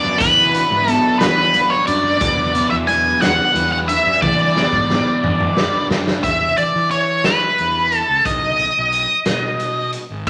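An up-front octave-fuzz lead guitar with wah sings its melody over a double-tracked phaser-washed fuzz riff, a lush sawtooth string machine with ensemble chorus in the background, round overdriven fingered bass and soft, very quiet congas, while a raw garage drum kit with a punchy kick enters at 0.2 seconds in this kaleidoscopic, hazy psychedelic rock fragment in a slow 6/8 at 60 BPM, with a drum fill leading to 6.2 seconds, where the strings, riff guitar and congas stop and the harmony moves from B minor through E5 to B, all bathed in a large studio reverb.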